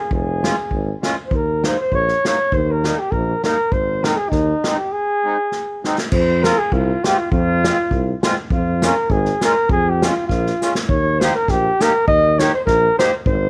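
An alpine folk piece for dance band, festive and bouncy, moving at 100 BPM in 2/4 with a lightly swung eighth-note feel, cut from a longer performance and tuned slightly below modern pitch. A mellow flugelhorn carries the melody from the opening moment, sounding distant and roomy yet sitting up front in a classical style. A tuba underpins it with a warm, vibrato-tinged bass line, while an acoustic drum kit played with bundle sticks adds dark cymbals, a medium-tuned snare and a punchy kick, with fills around 5.5 and 10.6 seconds. An accordion enters at 0.4 seconds with a reedy, sweet accompaniment colored by a light tremolo tuning and a vintage, band-limited tone. The harmony moves through Db, Eb, Ab and F minor across two matching phrases, and the dry sound keeps the band close and direct.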